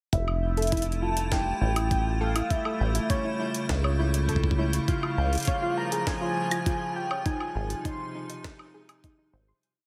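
IDM at 101 BPM in F major, wistful and glitchy, with a deep, rubbery acid bass sitting up front under a thumpy, gritty kick and a pitched-up, glitched jungle-style kit of closed hats, snare and high woodblock in an ever-changing beat. A velvety synth lead with tremolo, 12-bit sampler grit and analog delay sings motif-based phrases over an icy, crystalline pad, while a soft, round pluck with cassette tape and tape echo loops an 11-step arpeggio that drifts against the bar and a pulsing gated texture holds a high note in the background. The dreamy mix is soaked in plate reverb, moves through chords from Fmaj7 to Ab, and fades out from 6.5 to 9.6 seconds.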